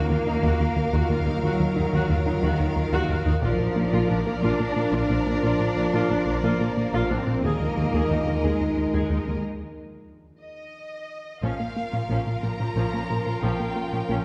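Heard from further back on a scoring stage with a wet reverb, this cut from a longer hybrid orchestral and electronic film cue moves at a slow 60 BPM in 6/8, vast and relentless, over chords drifting from Ebmadd9 through Bb and Ebsus4 to Bbm. Lush vibrato violin sections carry a focused melody and an expressive second line above an intense viola accompaniment, while distant cellos and double basses lay down a smooth, even low end beneath a punchy, funky plucked analog bass riff that sits loudest in the mix. A deep, warbling ambient pad with chorus hums very quietly throughout, and a very quiet, dark French horn section and mellow trombones hold sustained chords until a break at 9.4 s.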